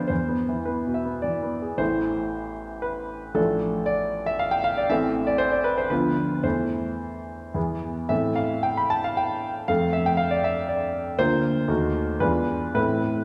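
Heard from further back in a recital hall with a wet reverb, this short excerpt from a longer romantic character piece presents a clear concert grand piano with a deep bass, alone throughout its 13.2 seconds. Stormy and brooding, it moves in three with free rubato, opening on a single high note before settling into minor harmony around 1.8 seconds. It turns restless near the close through a diminished seventh onto a tense dominant chord at 12.2 seconds.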